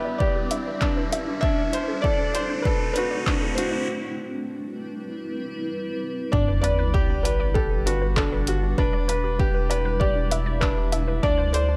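A soft, felt-muted upright piano carries the melody in this moving, intimate piano and strings electronica at 98 BPM in 4/4, tuned to A4 = 435 Hz, its action noise audible beneath a low-pass filter sweep and delay through the build-up. A brilliant, woody second upright piano plays a short-sustained riff, a blurred granular cloud pad holds chords, a warbling, lo-fi pluck with chorus plays arpeggios in the background, and a round, deep analog bass anchors the low end, with sidechain pumping on the pad, pluck and bass. A punchy, overdriven electronic kick and a layered deep house kit with handclaps and hi-hat drive the track in a lightly reverberant room, while a riser leads into a break at 3.9 seconds and a sub drop marks the drop at 6.3 seconds.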